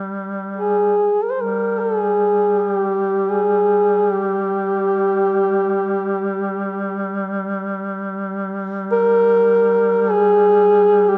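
This short fragment of a longer piece sits in a generous recital hall reverb with a 1.5-second decay, giving the warm production a solemn, enveloping air. It is a Caucasian folk lament in free time, steeped in longing. A clear-toned duduk holds a low drone on G3 from the very start, its soft attack, vibrato and scooped notes staying quietly in the background. At 0.6 seconds a dark duduk enters up front with the melody, moving between G4 and C5 in a traditional folk manner. Its soft attacks, scooped notes and vibrato give a smooth top to the line, and a slapback echo trails each phrase. Both instruments sound together to the end at 11.2 seconds.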